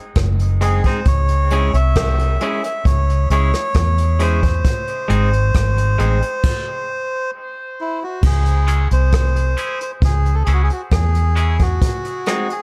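A round, punchy, foam-muted electric bass sits up front in this meditative, heavy dub reggae excerpt at 67 BPM in C# harmonic minor, moving between G# and C#m beside a brushed jazz kit with a boomy kick and dark cymbals. A reedy, breathy melodica carries the melody through dub echo, while a bright, compressed clean electric guitar, high-pass filtered and echoed, passes through a filter sweep. After a stop from 6.4 s to 8.2 s the groove returns, and the bass drops out for a closing break at 11.8 s.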